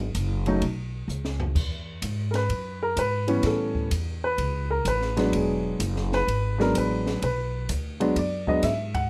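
A woody, growly upright bass opens this short excerpt from a longer jazz piano trio piece, with the open drum kit joining almost at once and the baby grand piano entering at 0.5 seconds. The mood is sophisticated and warm, set in a swinging 4/4 with a light reverb around the group. The drums sound dark and smooth in a small room, with dark cymbals, a high-tuned snare and a boomy kick, and a drum fill at 1.1 seconds leads into the piano solo that begins at 1.6 seconds. The piano sits up front with a natural tone, carrying the melody over chords moving through Eadd9, Bsus2, A9 and E9. Beneath it the pizzicato bass, strung with steel and plucked with a thumpy attack, stays close and present in the low register.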